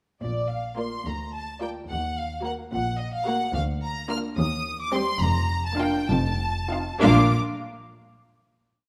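Graceful and lively, this short, complete classical-period movement for string orchestra moves in a rubato 6/8 at 64-73 BPM in Bb major, with a clear, vibrato-rich violin section carrying the melody up front from 0.2 s while a focused second violin line and rich, lightly vibrato violas enter at 0.8 s with pizzicato and sustained-chord accompaniment, smooth cellos sit in the background on pizzicato and sustained bass, lush double basses double the bass line, and a moderate scoring-stage reverb surrounds a passage that touches a colourful Eb minor chord before resolving through F7 to a final Bb chord at 7.0 s.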